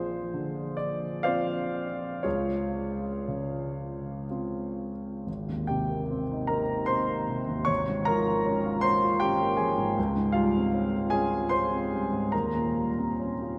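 Rubato in a slow 3/4, drifting between 57 and 80 BPM, this serene, dreamy impressionist solo piano piece in Ab major is a fragment cut from a longer work. A warm, present grand piano sits up front with long sustain, spanning Ab1 to Db6 over lush harmonies such as Dbmaj7, Abmaj9 and Dbmaj7#11 before settling on Eb13. A wet cathedral reverb with a 6.8-second decay places the instrument in a vast, echoing space, and a new section begins at 5.3 seconds and runs to the close at 13.6 seconds.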